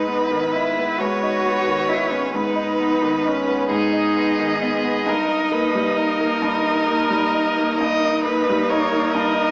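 In a rubato 12/8 lilt, this yearning, melancholic slow movement for piano quartet opens with a clear, smoothly bowed violin singing the melody up front with even vibrato, while a rich, focused cello carries a second line up front beside it. A second violin, warm with a smooth top, adds its own line from the background, and a bright, brilliant grand piano accompanies with long sustain and audible action noise. The whole passage sits in a wet recital hall with vinyl crackle and a small-speaker sound, and it is cut from a longer piece.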